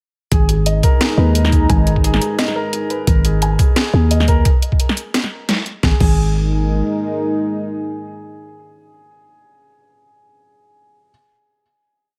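A sparse, lightly swung half-time beat of thumpy, pitched-down electronic kick and an overdriven kit with cracking snare, bright hats, shaker and crash drives this dark, spacious drum and bass piece alongside a growling, buzzy 808-style bass, until the drums stop at 6.1 s and the bass at 6.8 s. What remains is an evolving, chorused analog pad of detuned sawtooth chords with sidechain pumping and a soft felt-muted upright piano, its ten-step arpeggio loop drifting against the bar through 12-bit sampler grit and tape echo. Together they carry the final chord, the pad fading out at 9.4 s while the piano continues until 11.1 s.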